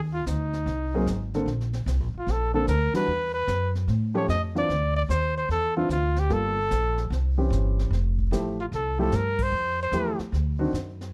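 A dark production with light reverb frames this playful slice of small-group swing and bop, cut from a longer piece. Up front, a close-miked trumpet with light vibrato carries the solo melody over a woody pizzicato upright bass and an intimate baby grand piano with audible action noise that accompanies through a progression rich in ninth chords. A brushed drum kit with a high-tuned snare and punchy kick sits further back, and the full band lands accents at 2.9 and 9.3 seconds before the trumpet stops at 10.2 seconds.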